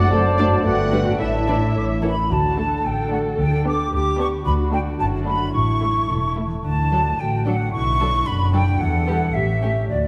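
A wet scoring-stage reverb surrounds this mischievous, whimsical film cue in D major at 110 BPM in 2/4. It is cut from a longer piece and opens on D7/F#, G and A before settling into a D, G, Bm7, Em and A7 progression. An up-front, airy flute section carries a second line over ringing, fingerpicked harp arpeggios and a close, bowed double bass section, while veiled con sordino cellos and violas join two quiet, muted violin sections, one on the melody and one on a second line. In the opening seconds, a distant oboe, a soft clarinet, a dark bassoon and a mellow French horn section add woodwind colour and sustained chords, then fall away as the cue moves into its second part at 2.3 s.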